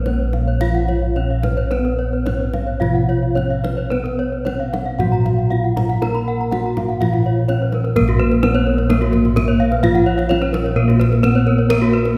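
Hypnotic and shimmering, this short cut from a longer Balinese gamelan piece moves in a straight 4/4 at 109 to 129 BPM in a Bb pelog scale. A bronze metallophone carries the melody in a close, dry, full tone, struck with a wooden mallet and tuned in pairs so that its ringing notes beat and shimmer, and the lead line carries a slapback echo. Two more metallophones spin arpeggios above: one bright and struck with horn mallets, the other wooden-mallet struck in the same paired, shimmering tuning. A darker, smoother metallophone plays the accompaniment from the background. Up front, the round bossed gongs anchor the bass, dark and beating, while the kendang adds deep, compressed, saturated hand strokes. A reverberant concert hall places the ensemble further back in the room, and the music shifts into a new section at 8.0 seconds.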